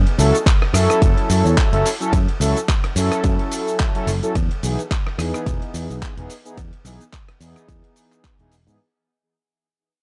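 A punchy, growly picked electric bass sits up front in this groovy, sensual nu-disco excerpt, riding a swung sixteenth-note feel over two chords, F#m7 and then Emaj7 at 4.4 seconds. A layered electronic kick joins at 0.5 seconds, landing with a punchy, produced thump beneath a dusty soul sampler-style kit of cabasa, handclaps, hi-hat, ride cymbal and rim click that sounds compressed, gritty and tape-warm. Mellow synth brass fills the accompaniment with round, detuned sawtooth tones, dark and brassy, carrying chorus, vintage 12-bit sampler grit, sidechain pumping and analog delay along with a filter sweep. The passage plays as a drop while fading out across its whole length, cut from a longer piece. The sound is dry and gritty, with transformer saturation and a digital ambience giving it a hardware-recorded edge.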